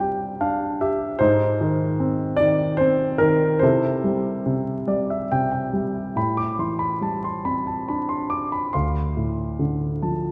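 Bathed in a church-like hall reverb with vinyl crackle and a dulled top end, this reflective, melancholic fragment of lyrical classical solo piano drifts in 3/4 at 68-76 BPM with a free rubato feel, its polished, up-front concert grand offering deep bass and short sustain as the harmony moves from Csus2 through Ab and C6 before settling into A minor at 6.2 seconds on Am7 and Dm7, with brief fills at 0.0, 4.4 and 9.6 seconds.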